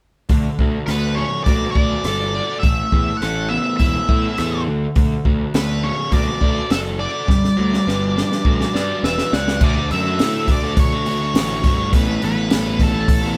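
Indie rock with an upbeat, jangly mood, this short cut from a longer piece moves in a straight 4/4 with a band playing live in one room under light reverb. A crunchy overdriven guitar carries the riff up front, its picked tone warm and gritty, while a fuzz-soaked picked bass sits underneath with a round, punchy low end. The compact cocktail drum kit sounds dry and close, pairing a high-tuned snare and punchy kick with dark cymbals, rim clicks and hi-hat, and it rolls through a fill from 7.3 to 9.6 seconds. An octave-fuzz lead guitar joins at 0.9 seconds with a dark, distorted picked melody. The harmony circles through Dmaj7, Asus2 and Gmaj7 before a second section opens at 9.6 seconds and returns to Dmaj7 and Asus2.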